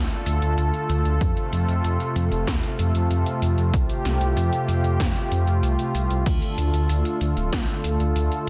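Driving and nostalgic, this synthwave excerpt pairs a smooth, warbling analog pad, up front with lush chorus and sidechain pumping over chords moving from Dm to F and back, with a deep, rumbling detuned saw bass that also pumps, 80s electronic pad drums marked by a gated snare, metallic hats and crash cymbal, and a punchy, tape-warm electronic kick entering at 1.2 seconds, all set in light digital ambience under a dense, heavily limited modern master.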